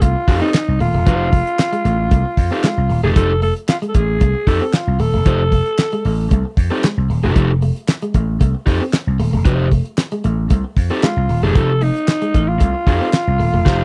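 A strutting, playful funk groove in F mixolydian at 114 BPM opens on a growling, raspy alto saxophone melody up front, riding over a fat-snared, dry 70s drum kit with handclaps and crash, a punchy, growly slap bass and a twangy clean guitar riff sitting in the background with spring reverb. A crunchy overdriven guitar joins at 0.3 seconds, the sax drops out at 6.6 seconds and returns at 11.0 seconds, all over a single F9 chord. The close, dry 1970s-style studio sound ends on a band accent at 13.7 seconds, as this cut from a longer piece breaks off.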